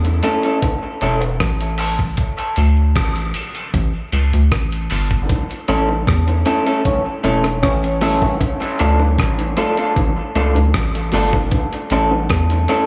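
An echo-heavy, lightly reverberant dub reggae excerpt at 77 BPM in D harmonic minor, spacious and deep, built on a rubbery, hollow square-wave bass and a gritty, compressed sampler-style drum kit with a thumpy kick, hi-hat and rim click up front, distant low-tuned bongos with dub echo, and a slightly broken-up electric guitar through a small old amp with spring reverb, while a mellow trombone section with light vibrato slips in from 6.8 to 8.4 seconds during a band accent, all moving between A and Dm under filter sweeps.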